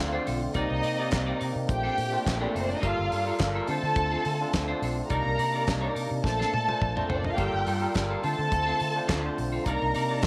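A lush, dark violin section sits up front from the first moment, bowed with vibrato and portamento and carrying an expressive second line over a round, punchy, foam-muted fingered bass, while a clean, twangy picked electric guitar, a barky tine electric piano with light overdrive through a combo amp, and a fat tonewheel organ with key click, third harmonic percussion and a fast rotary speaker fill in the chords. A damped 70s drum kit joins at 0.3 seconds with a dry, fat snare, tight kick, hi-hat, toms and handclaps, giving this glamorous disco excerpt a straight, danceable feel. Slapback echo trails the strings, and the electric piano and organ stay in the background behind them. The harmony cycles through Dm7, Cm9, Bbmaj9 and Gm9 in a smooth, moody loop. A drum fill runs from 6.2 to 7.4 seconds before the groove rolls on under a light studio reverb.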